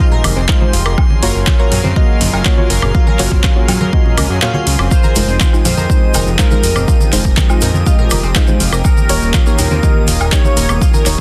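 Progressive house with a dreamy, bittersweet mood, built on an overdriven, punchy electronic kick that sits up front and briefly drops out between 4.4 and 4.9 seconds. A fat, detuned sawtooth bass with a filter sweep pumps beneath it, while a deep house kit adds handclaps, metallic hi-hats and woodblock, with soft-handed congas and a grainy tube shaker tucked into the background. Harmony comes from a lush, evolving unison pad with a touch of 12-bit sampler grit and dark, warbling chord stabs carrying dub echo, moving from Fm7 to Gbmaj7 and later through Fm7 to Eb7. A crystalline wavetable pluck spins arpeggios with cassette-tape colour and echo, and a calm glass-harmonics texture drifts high above with its own built-in reverb. At 4.9 seconds a velvety synth lead with vibrato and a sub octave enters, singing a narrow, smooth melody through chorus and dub echo. Most parts breathe with sidechain pumping, and the dense, heavily limited master keeps the mix close and dry, cut from a longer piece.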